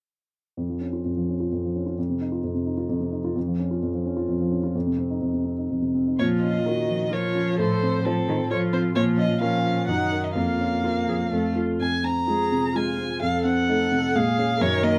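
In a quick 3/4 at 128 BPM with a flexible, rubato feel, this restless, stormy classical-period movement for piano quintet in Bb minor is an excerpt from a longer piece. A warm baby grand piano, present and polished up front, opens alone at 0.6 seconds with accompaniment that alternates between Db/F and bare F5 chords. At 6.2 seconds the strings join. A violin with a rich, expressive tone sings the melody with vibrato and portamento, sounding distant. Beneath it a smooth, even cello carries a second line, and a dark, woody viola adds bowed accompaniment. Light reverb surrounds the quintet as the harmony moves through Bbm, F/A, Ebm/Gb, F and Fm before an F7 resolves to Bbm7 near the close at 15.0 seconds.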